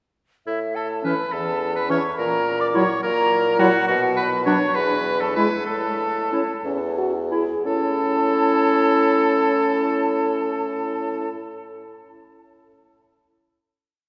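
A hollow, tongued concert flute carries the melody with vibrato in this short, lively classical-period piece for wind quintet, while a clear, up-front oboe doubles the tune at the octave beneath it. The spirited 6/8 movement in A major moves at 58-71 dotted-quarter beats per minute and is tuned slightly high, to A4 = 444 Hz. A present bassoon holds the bass on the beats and in sustained notes. From 1.0 seconds a distant, mellow clarinet and a French horn with light vibrato join with short accented chords and sustained chords, and the horn answers at phrase ends. After the harmony moves to F#7/A# at 2.2 seconds, the music slows from 3.0 seconds as it passes through B5 and E5, returns to A at 5.7 seconds, and holds a final chord from 7.7 seconds that rings into a wet, spacious church reverb.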